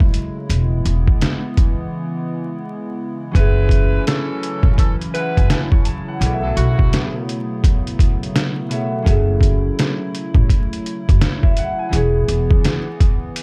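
A gritty, moody boom-bap hip-hop excerpt in F# minor at 84 BPM with swung sixteenths opens on a hollow, airy, flute-like pad holding slow-attack chords beneath an overdriven, muffled, pitched-down sampler drum kit, whose thumpy kick and medium-tuned snare sit up front. A woody, dark pizzicato upright bass enters just after, and a ringing, fingerpicked concert harp with a cassette-tape colour joins at 3.3 seconds, moving through chords from F#m9 to B9sus4. Tight, jazz-style saxophone section stabs with light vibrato and slapback echo appear from 3.4 to 7.2 seconds, all within a small-room ambience laced with vinyl crackle.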